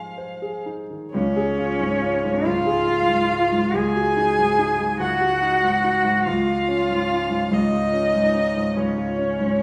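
A dark, con sordino cello carries the second line with light vibrato, soft attacks and portamento, beneath a veiled, closely heard muted violin singing the melody with vibrato, in this tender, serene fragment from a slow romantic piano trio movement in Db major. The grand piano's intimate accompaniment sounds natural and up front, its action noise audible, as the three play together throughout a rubato 12/8 at 47 dotted-quarter beats per minute. A small room's ambience blends with a moderate scoring-stage reverb, and the harmony settles onto Db at 1.1 seconds.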